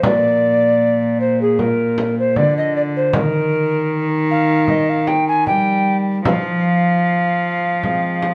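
Heard through a moderate stone room with a 1.1-second reverb, this excerpt of a solemn, rustic renaissance-style consort dance at 77 BPM in 4/4 puts a hollow, woody alto recorder with chiff and vibrato up front on the melody, backed by a single dark, gut-string bowed cello on the bass, a thumb-plucked concert harp ringing softly in the background, and a small, bright, saturated frame drum played with soft hands, moving from Bb to Eb to Fm.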